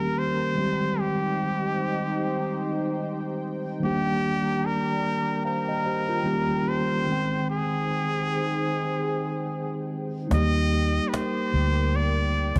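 Nostalgic and cosy, this lo-fi hip hop excerpt has a gently swung feel, with a nasal, breathy straight-muted trumpet carrying a jazz-style melody with vibrato over a mellow tine electric piano and a deep, slowly evolving analog pad thickened by chorus, before a round, foam-muted electric bass and a woody cajon with faint snares join at 10.3 seconds, all set in a light small-room reverb.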